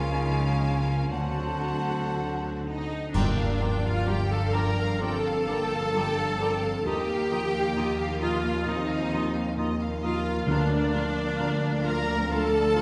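A wet scoring-stage reverb surrounds this bittersweet, longing excerpt of cinematic film score, moving at a rubato 66 BPM in 4/4 and settling into G minor from 3.1 s. A rich violin section carries the melody, while a bright, airy silver flute, a clear second violin section, a warm cor anglais and a distant, mellow clarinet weave quiet second lines alongside a felt-muted upright piano, an up-front viola section, dark French horn chords, a focused double bass section and a smooth cello section. At 3.1 s a band accent brings in dark clash cymbals with concert bass drum and faint timpani, and the timpani return at 10.5 s as the harmony moves from Gm7 through Ebadd9 to Bbmaj7/D.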